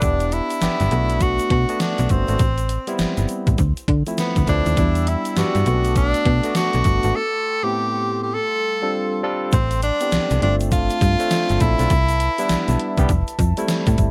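Set in a small room, this bouncy, confident new jack swing excerpt rides a swung groove from a gated 80s drum machine with a thumpy kick and an overdriven gated-reverb snare, a snappy, metallic FM slap bass up front, a barky tine electric piano and a grainy egg shaker in the background, while a clear tenor saxophone with light vibrato and tape echo carries the melody until 13.4 seconds, a glassy, ethereal glass harmonica enters with sustained chords at 4.8 seconds, and a break arrives at 7.2 seconds.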